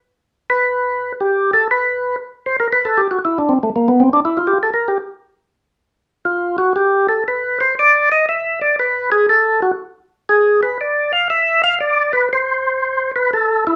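Swung eighths at 119 BPM in 4/4 give this greasy jazz excerpt its easy, rolling swing, tuned to A4 = 442 Hz. A percussive tonewheel organ takes the solo from 0.5 seconds to 13.8 seconds, sitting up front between A3 and F5 with a warm, full, clean tone, a second-harmonic percussion attack, audible key click and the slow churn of a rotary speaker. The band plays live in one room, and a wet studio reverb with a short 0.6-second tail adds space.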